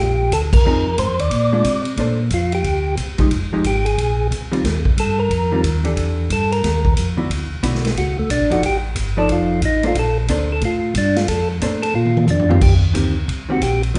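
Soul jazz organ trio cut from a longer piece, swinging and bluesy at 180 BPM in Bb major: a percussive, round tonewheel organ carries the melody and takes a solo from 2.0 s over a mellow, dark organ bass with key click, both turning through a slow rotary speaker, while an up-front big-band drum kit with a boomy kick enters at 0.3 s and plays a fill at 11.9 s, a clean, picked hollow-body jazz guitar accompanies beneath, and the mix sits in a wet large-studio reverb heard from further back in the room.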